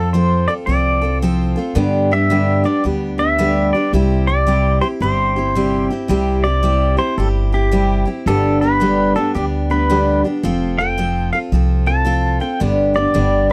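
Honky-tonk and classic country in C major, this sunny, easygoing excerpt moves at 111 BPM in 4/4 with a swung eighth-note feel. A twangy, clean pedal steel guitar carries the melody, played with fingerpicks and slide, its compressed tone shaped by volume swells. Beneath it, a bright, full-bodied picked steel-string acoustic guitar with fresh strings supplies the accompaniment, while a woody, thumpy pizzicato upright bass holds down the low end. All three parts sound up front and play throughout the 13.5 seconds, cycling through F, G and C with the phrase repeating at 6.1 seconds. The sound is dry and close, in the manner of a 1970s studio recording with little reverb.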